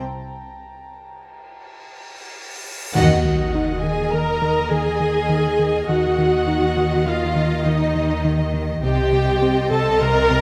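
A lush, up-front viola section underpins this eerie, uneasy suspense film cue in 5/4 at 102 BPM in Eb dorian, where a dark violin section with portamento hangs high in the background from the start, a huge, bright cymbal swell rises from 1.9 s into a sub drop at 3.0 s to bring in the warm violin lines, an intimate chamber violin melody held on Eb5, a round analog bass riff, focused cellos and rich double basses, all set in a moderate concert hall reverb.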